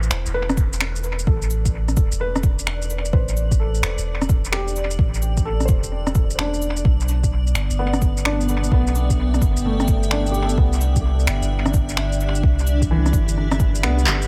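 A felt-muted upright piano with audible action noise, gritty 12-bit sampler texture and analog delay opens this wistful, ghostly future garage excerpt in A minor at 129 BPM, alongside a round, mellow dub sub bass, both pumping to the sidechain, and a swung layer of overdriven electronic shaker, finger snaps, cabasa, rim click and handclaps soaked in dub echo; a deep, overdriven electronic kick arrives at 0.6 seconds, a blurred, detuned granular cloud pad swells in at 1.7 seconds over chords moving from Am11 to Em7 and Cmaj9, and a drum fill at 14.1 seconds closes the echo-heavy digital ambience.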